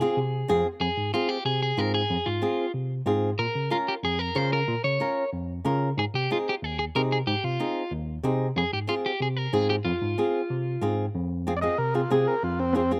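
A picked electric guitar at the edge of break-up leads this fiery, danceable Latin excerpt, soloing from 0.8 seconds with a compressed, slightly gritty tone and a slapback echo. Beneath it, a fingerpicked flamenco guitar supplies a warm acoustic accompaniment, while a clean tine electric piano, heard through its built-in speakers, carries the bass line. The tune moves at a brisk 186 BPM in a straight 4/4, in F minor, cycling through Fm, Bbm and Ab before returning to Fm. Near the end the music shifts to a new section at 11.1 seconds, and at 11.6 seconds a vintage combo organ takes the melody in a short solo, mellow and clean with a light vibrato and its own slapback echo. Every part sits up front in a dry, open-air sound with little reverb.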